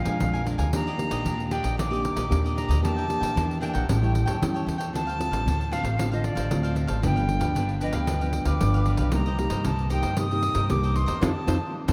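Set in a vast, echoing space with a moderate cathedral reverb, this nostalgic, yearning samba and choro passage moves at 114 BPM in a straight 4/4, cut from a longer piece. An airy, reedy concert flute with vibrato and a crisp attack carries the melody over a dark, full-bodied nylon-string guitar played thumb-plucked in a classical manner, while a picked, warm cavaquinho adds higher accompaniment. Up front, a growly, woody pizzicato upright bass on steel strings anchors the chords from Bb7 through Ebmaj7, Dm7 and Cm7 to F7, with a jingly pandeiro struck with hard hands, and the band lands a shared accent from 11.2 to 11.9 seconds.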